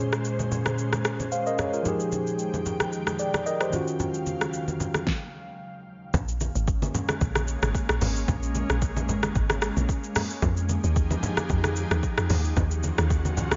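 A swung sixteenth-note amapiano groove from a soft-kicked, fat-snared, overdriven electronic drum kit and bright, hard-handed congas carries this late-night, deep excerpt, where a mellow tine electric piano plays over an ethereal, pumping pad until a stop at 5.1 seconds, and then at 6.1 seconds a round, dark log drum bass drops in beneath minor ninth and seventh chords, all in a light digital ambience with a dulled top end.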